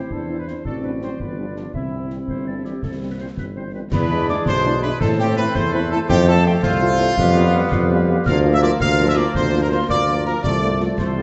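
In a 6/8 at 110 beats per minute on the dotted quarter, this festive, proud military-style march for wind band moves with a straight feel in C major, a fragment taken from a longer piece. A bright, close-miked trumpet section carries the melody with a soft attack, over a woodwind section with light vibrato and a smooth-topped tuba that sits up front as the warm foundation of the bass. A mellow, very quiet French horn section fills in the accompaniment, while the euphonium sings a vibrato second line alongside the band in the opening phrase before dropping out at 3.6 seconds. At 3.9 seconds the second section begins: a pure, hollow piccolo adds a high second line in the background, and a clear, vintage-toned trombone section holds sustained chords behind the band. Concert bass drum, snare and dark clash cymbals keep the march pulse from a close but background position, and the whole ensemble sounds in a wet recital hall with a rounded, soft top end.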